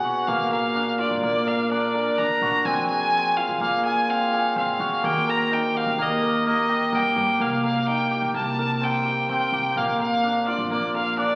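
A bright, biting solo violin carries the melody up front, its bowed line earthy and touched with light vibrato yet set somewhat distant in the reverb. This contemporary chamber piece moves in an uneven 5/4 at 127 BPM with a straight feel, and its mood is restless and hypnotic. A hammered cimbalom plays shimmering, ringing arpeggios beneath the violin, sitting up front with a warm acoustic tone. A pizzicato upright bass on steel strings supplies a woody, growly, thumpy low end, placed quieter in the mix. The harmony cycles through A#, Fm, D#, Cm7 and back to A#, all three instruments sounding from the start to 11.4 seconds in this section cut from a longer work. A wet scoring-stage reverb and the crackle of a very old 78 rpm record give the sound an aged, spacious character.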